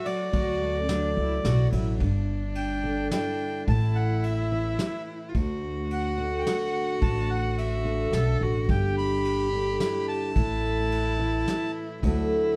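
Accordion, bowed cello and fingerpicked steel-string acoustic guitar open this gentle, pastoral acoustic folk piece together, cut from a longer performance and moving in 3/4 at 108 BPM in D major. The reedy accordion carries the melody high in its range, set in a boxy small room with plate reverb. Beneath it a single cello plays a close, intimate second line with a soft attack, airy bow and light vibrato, while the guitar's concert-style fingerpicking fills out the accompaniment. A distant, roomy brush kit of kick, snare and dark ride cymbal comes in at 0.1 seconds, and a woody pizzicato upright bass follows at 0.3 seconds, sitting up front as the loudest part. The harmony moves from Dadd9 through G and A chords back to D, and the accordion drops out at 11.7 seconds while the other parts carry on, all within a dark, lightly reverberant production.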